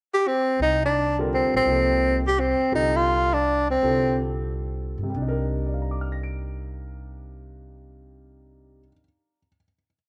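A home cassette recording with a moderate spring reverb frames this brief, spiritual and hypnotic jazz piece in 3/4, swung and pitched in C dorian at 119-170 BPM, where a breathy, whispered tenor saxophone with vibrato states an intimate motif-based melody up front from the pickup bar, woody pizzicato upright bass plays a two-feel line from 0.6 seconds, a natural-toned baby grand piano adds syncopated comping in quartal voicings from 1.2 seconds, the tempo slows from 2.7 seconds, and the piece comes to rest on a closing Cm7 chord at 5.2 seconds.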